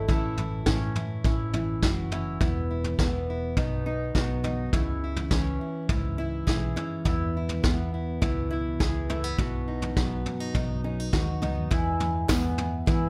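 Up front, a vintage brush drum kit with a punchy kick, medium-tuned snare and toms drives this short, uplifting indie folk cut at 103 BPM in E major, its small-room sound rolled off at the top. A round, dark hollow-body bass and bright-edged qanun arpeggios run throughout, while a fingerpicked plugged-in steel-string acoustic guitar carries the accompaniment until 11.7 seconds, when a boxy, woody twelve-string with shimmering octave-doubled strings takes over. At 12.3 seconds a very quiet, crisp group handclap and a jingly tambourine in the background add a brief accent to the dry, building arrangement.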